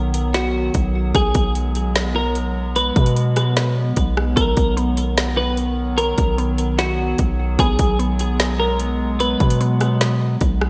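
A warbly, tape-like pad and a long, sustained 808-style bass open this dreamy, blissful excerpt of atmospheric cloud-rap in a half-time feel. The pad's detuned square and triangle tones carry a nostalgic, lo-fi, vintage haze: it holds slow-attack chords with built-in reverb and chorus, and sidechain pumping makes it breathe. Underneath, the deep, mellow sine bass sits up front, and an electronic trap kit joins almost at once with a hard-clipped kick, woody snare, rim click and metallic hats treated with gated reverb. From 0.3 s a clean, bright, twangy electric guitar carries a compressed, picked melody through analog chorus and delay. At 4.4 s a very quiet, round FM mallet pluck adds percussive arpeggios. The whole mix has light reverb and a bright, 1980s-style digital polish.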